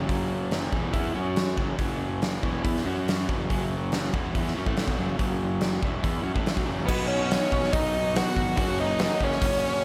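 Classic rock with a swaggering, sunny mood, this short excerpt drives along at 142 BPM in a straight 4/4, set in F# mixolydian. An overdriven electric guitar carries the riff from the start, its dark, double-tracked, compressed tone sitting up front with a slapback echo, while a growly fuzz bass sits in the background underneath. A big rock drum kit with a punchy kick, medium-tuned snare, hi-hat and crash cymbal sounds up front in a bright stone room. The opening rides an F#5 power chord, then at 6.9 seconds the harmony moves to B and an octave-fuzz lead guitar enters with a dark, distorted melody, before the music returns to F# at 8.6 seconds. A moderate recital hall reverb gives the whole mix a big arena sound.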